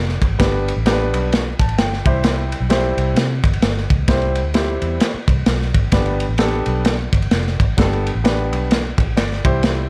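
Uptempo 1960s-style soul at 130 BPM with a swung, danceable feel in G major, this short excerpt moves from G to C and back to G. A crunchy breakbeat drum kit sits up front with a tight kick, medium-tuned snare and dark ride cymbal, its gritty, saturated tone rolled off at the top, while a vintage muted fingered electric bass adds round, punchy, foam-muted lows. A present, polished baby grand piano bathed in plate reverb accompanies throughout and adds fills at 1.3 and 8.9 seconds, all within a light room ambience.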